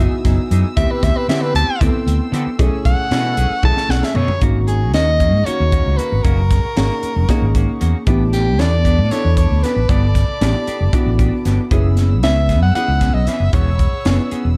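A dry, dark-toned production carries this intense, driving electric jazz fusion passage in 7/8, cut from a longer piece, where a breathy soprano saxophone with vibrato enters at 0.8 s to solo over an up-front, growly fretless bass with analog chorus, a gritty, punchy fusion kit with a high-tuned snare whose fill arrives at 3.6 s, mellow, boxy grand piano accompaniment, twangy clean guitar stabs with subtle chorus in the background, and soft sul tasto strings holding sustained chords far back in the mix.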